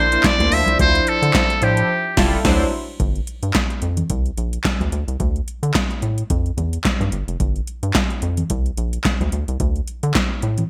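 A muted trumpet, a chorused polysynth and a rubbery square-wave bass open this slick early-eighties boogie funk excerpt together, with the analog drum machine and congas entering almost at once. The trumpet carries the melody in a buzzy, breathy, jazz-styled voice, thin and intimate behind its metal mute, while the glossy polysynth spreads lush ninth chords underneath with a chorus sheen and a filter sweep. The band hits an accent near the close of the opening passage, and by 2.6 seconds both trumpet and polysynth have dropped out, leaving the groove to the rhythm section over sparser suspended chords. The bass is hollow and bouncy with a resonant filter pluck, and the drum machine pushes up front with a deep kick, punchy snare, metallic hi-hats, handclaps and crash, all overdriven and treated with gated reverb. Very quiet, damped congas with a thick skin add a soft, high-tuned patter in a bright, lightly reverberant digital mix with a funky swung feel.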